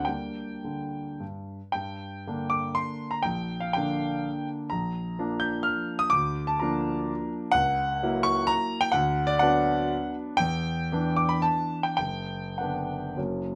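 Dotted rhythms in triple time give this short romantic dance its lilt, and the rubato lets each phrase stretch and relax at will. A single grand piano carries everything from 0.0 to 13.6 seconds, with a warm, polished tone that sits up front and present, its notes ringing with long sustain. Light reverb adds a touch of space around the instrument, and its range reaches from deep bass to high treble. The mood is capricious and wistful, and the harmony turns toward a new key at 7.6 seconds, moving from G minor to B minor. The recording is cut from a longer piece.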